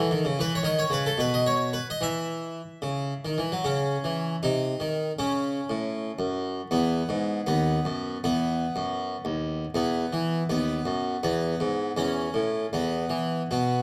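A lilting 6/8 with flexible rubato, moving at 72 to 81 dotted-quarter beats per minute, carries this flowing, dance-like fragment of a baroque-style suite movement for solo harpsichord. The French-style instrument, plucked and full with two sets of strings, sits up front and spans D#2 to E5, drifting from C-sharp minor colours through F-sharp minor before settling into E major from 9.7 s. Close, detailed microphones catch the attack, while a moderate recital-hall reverb lends an airy halo to this short passage cut from a longer piece.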